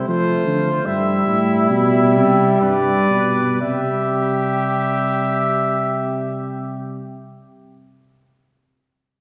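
In a straight 3/4 that slows down over the first 3.6 seconds within a 56-79 BPM range, this elegant, joyful classical brass canzona in C major, cut from a longer piece, sets a warm, close-miked cornet melody up front over a mellow, distant trumpet second line with light vibrato, a clear euphonium accompaniment and a roomy tuba bass, also with light vibrato, moving through F, C/G and G before landing on C at 3.6 seconds in a wet concert hall with a 2.0-second reverb tail.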